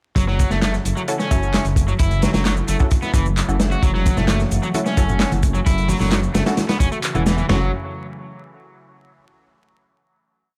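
Crackly, echo-heavy and raw, this energetic breakbeat piece in F# minor at 131 BPM drives a crunchy, up-front looped break with edits, dark and rolled-off, under a rumbling detuned saw bass, an overdriven semi-hollow guitar riff trailing dub echo, a swirling phased pad pumping in the background, a tape-warm layer of electronic shaker and handclaps, muted 12-bit chord stabs entering at 1.1 seconds, and very quiet congas and bongos joining at 4.1 seconds before a final chord rings out to 9.3 seconds.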